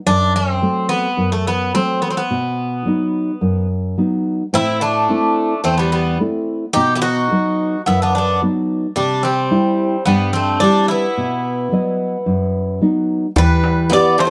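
Cool and brooding, this Greek folk passage cut from a longer piece sets a bright, metallic, double-strung bouzouki melody up front over a dark, thumb-plucked nylon-string guitar, with a second bouzouki adding a quieter line from 4.5 seconds and a crisp, saturated metal-shell darbuka arriving only at 13.4 seconds, inside a dusky production with moderate studio reverb.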